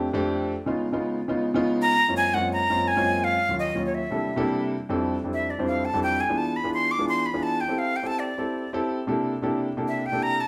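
Sophisticated and lively, this jazz excerpt moves at a brisk 171 BPM in a straight 4/4 feel, opening in Db major before shifting to F major at 4.8 seconds. A concert grand piano supplies accompaniment throughout, its tone intimate with deep bass and the audible noise of its action close at hand. A metal jazz flute enters at 1.8 seconds carrying the melody, breathy and bright with a straight tone, a crisp chiff on each attack and a slightly reedy edge. From 4.8 seconds the flute takes a solo over lush extended harmonies such as Fmaj13, E7b9 and C13. Both instruments sit up front, captured as a band playing live in one room and bathed in a generous large-studio reverb that adds a sense of space.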